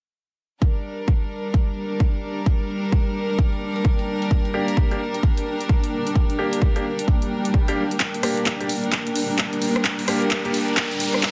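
A punchy, up-front electronic kick drives this bouncy, gritty bass house excerpt with a swung feel, joined by a layered house kit of handclaps, hi-hats and rim clicks under a filter sweep, while a rich, earthy chamber string section holds sidechain-pumped sustained chords, a cloudy, evolving granular pad drifts in at 1.9 seconds, brilliant baby grand piano stabs with digital delay arrive at 4.5 seconds, and a background swell from 7.2 seconds leads into a build-up, drum fill and electronic riser from 8.0 seconds, all set in light digital ambience.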